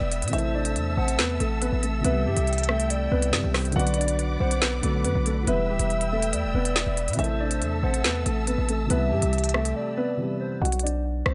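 A hard-hitting 808-style bass anchors this ominous, cold drill excerpt in a half-time feel, its punchy, heavy sine tone snapping in with a fast attack and decaying up front. The electronic drum kit enters at 0.1 seconds with a woody snare, rim clicks and crisp hi-hats, and the hats fall silent at 10.6 seconds. A dark grand piano carries the melody through a low-pass filter, mellow and boxy, while a second concert grand, filtered the same way, adds accompaniment with deep bass. Alongside them, a hollow, clarinet-like synth lead blending square and triangle waves, detuned and touched with vibrato, traces a second line through chorus and delay, and a bowed symphonic string section holds lush, expressive chords. The harmony cycles through Am, C, Bm and Em, with a short break from 9.8 seconds, all set in a small room ambience.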